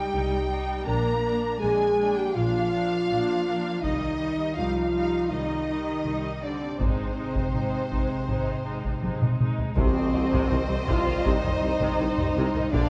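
Taiko drums enter at 3.8 seconds, heavy sticks booming in a live room beneath this dark, relentless cinematic orchestral cue, cut from a longer piece. Before they arrive, a mellow French horn section holds soft-edged sustained chords over bowed strings moving from C minor through Bb and Ab, with a dark, smooth cello section and a lush double bass section anchoring the low end. Two violin sections share the upper register: a rich, focused second line sits forward, while the melody, carried by a warmer violin group with vibrato, stays in the background, and a rich, intense viola section fills the middle. A drum fill from 9.0 seconds drives into a full-band accent at 9.8 seconds, where a distant, very quiet tuba joins the bass and a dark, faint tam-tam enters. The whole cue sits in a moderate scoring-stage reverb and carries the worn, warbling pitch drift of old cassette tape, giving the epic sound a vintage, weathered cast.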